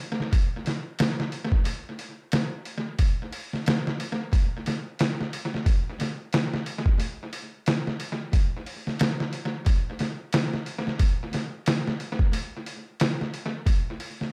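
Trip hop at 90 BPM in 4/4 with a 16th-note swing, this hypnotic, brooding fragment of a longer piece features only an up-front, sampler-style drum kit from 0.2 to 14.3 seconds, its pitched-down, muffled, compressed sound carrying a thumpy kick, medium-tuned snare and hi-hat through overdrive, studio reverb and tape echo, all set in a digital, echo-heavy ambience.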